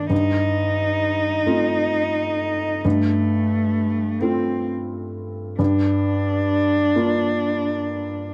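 A felt-muted upright piano and a single bowed cello begin together, the piano's boxy, mellow accompaniment carrying audible action noise while the cello plays a smooth, sul tasto second line with vibrato and a soft attack. This melancholic, fragile neoclassical fragment moves at a rubato 44 BPM in 6/8, tuned to A4 = 443 Hz, and shifts from F7/G to Gm7 at 5.6 seconds. Both instruments sit up front and intimate within light reverb and a dark production, and the passage is cut from a longer piece.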